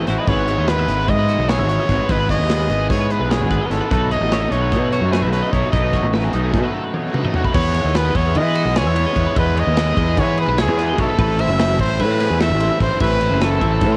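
Math rock and midwest emo in a quick 9/8 at 297 BPM counted in eighths, bright and wistful in E major, cut from a longer piece and recorded at home on cassette with small room ambience. A brilliant, punchy trumpet carries the melody up front with a cassette-tape tint, over a growly fuzz bass and a double-tracked overdriven guitar riff, while a chorused twelve-string chimes arpeggios in the background and a very quiet twangy guitar accompanies only until 7.6 seconds. An acoustic studio kit with bright cymbals and a punchy kick drives the chords from Emaj7/G# to B7, then a break from 6.6 seconds and a drum fill from 6.9 seconds lead into a new section on Emaj7 and Amadd9.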